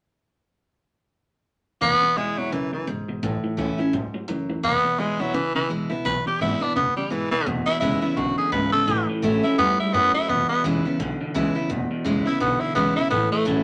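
Rock cut from a longer piece, rowdy and upbeat, moving at 170 BPM in 4/4 with a swung eighth-note feel in E major. A raspy tenor saxophone carries the melody up front, close-miked and gritty, with vibrato and scooped notes in a pop-style solo voice. Beside it, a bright, full-bodied picked steel-string acoustic guitar supplies accompaniment, also sitting forward in the mix. An electric guitar through a small old amp plays a slightly broken-up, compressed riff low in its range, while a woody, growly pizzicato upright bass thumps underneath. All four parts come in together at 1.8 seconds and play to the end, the saxophone dropping out just a moment before the others. The chords move between E and A, a second section begins at 7.5 seconds, and everything is set in a moderate studio reverb.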